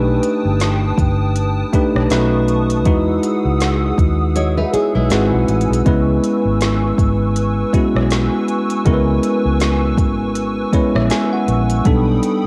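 A home cassette recording with light reverb and a digital ambience frames this late-night, moody slice of contemporary R&B, cut from a longer piece and carried by a gentle sixteenth-note swing. A bell-like tine electric piano sits up front, bright and clean, supplying the accompaniment, while a dark, round, foam-muted fingered bass punches through beneath it. A hollow, flute-like pad with ensemble chorus holds soft, warbling chords in the background, and an electronic R&B kit adds a woody snare, smooth hats, rim clicks and a soft kick, its tape-warm sound re-recorded in a large room. The kick drops out at 4.4 seconds as a full-bodied nylon-string guitar fingerpicks a short run of arpeggios through tape echo, and the electric piano plays a fill at 10.4 seconds. The harmony moves through altered dominant and ninth chords, settling on C#m7 before returning to B7alt.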